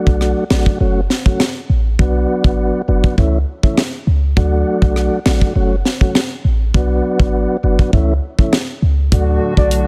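A clean 808-style bass stands out in this sunny, bouncy dancehall excerpt, its deep, boomy sine tone hitting with a fast attack and decaying darkly up front at 101 BPM in a straight 4/4. A deep reggae drum kit plays alongside with dry acoustic hi-hat, rim click, a high-tuned snare and a tight kick, while a tonewheel organ carries the accompaniment with a clear, clicky tone through a fast rotary speaker. The chords cycle through D, F#m, Bm and A/C# before returning to D at 9.1 seconds, where a hollow, flute-like pad enters softly with chorus and sidechain pumping. A velvety synth lead touches a single D5 with chorus and vibrato at 9.6 seconds, just before the cut. The whole sits in a small room ambience with an echo-heavy mix.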